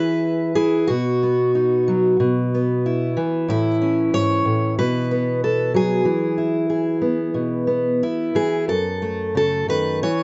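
Melancholic and wistful, this short folk fragment of about 10.2 seconds is carved from a longer piece and features a lone fingerpicked steel-string acoustic guitar. The tempo sits around 92 BPM in 4/4, but the playing breathes with a loose, rubato feel. The guitar spans from F#2 up to C#5, moving through a chord sequence that starts on E, passes through B, A and a bare B5, returns to E, and settles on F#m at 8.7 seconds. Its tone has an auditorium-like body, sits up front in the mix, and lets audible finger squeaks come through. A moderate studio reverb adds a sense of space, while the dark, mellow production keeps the top end soft and rounded.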